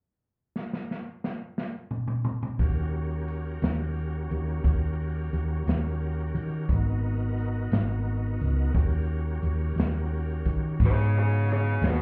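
A swinging big-band drum kit opens this mournful, smoky slow blues in 12/8 with a fill that runs until 2.6 seconds, its punchy kick, medium-tuned snare, hi-hat, toms and crash cymbal sounding airy and polished up front. At 2.6 seconds a hollow-body short-scale electric bass, fingered and round, joins alongside a bright, shouting tonewheel organ that holds sustained chords through a slow rotary speaker and chorus vibrato. The harmony moves from a tense D#7#9 to G#m7 and back before settling on G#m9. At 10.9 seconds a dark, smooth lead guitar with overdrive picks a short melody line as the fragment closes. The recording sounds muffled, as if heard through a wall, wrapped in light club reverb that suits its mood.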